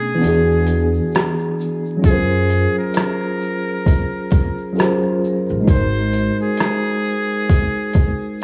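A metal-muted trumpet carries the melody in this nostalgic, mellow lo-fi hip hop excerpt. Its buzzy, breathy solo tone has light vibrato and scooped notes in a jazz style, softened by a low-pass filter and tape echo. Beneath it, a clean tine electric piano sits up front with cassette-tape colouring, moving through E9, Gbmaj9#11 and Ab9 chords at a slow 66 BPM with a swung sixteenth-note feel. A compressed, pitched-down trip hop drum kit enters at 0.2 s, overdriven and re-recorded in a small room, with a muffled, thumpy kick, hi-hat, rim click and shaker. The upright bass comes in at the same moment with a woody, dark gut-string pizzicato and stops at 6.3 s, while a grainy egg shaker sits in the background. Vinyl crackle, light reverb and small-room ambience frame the mix.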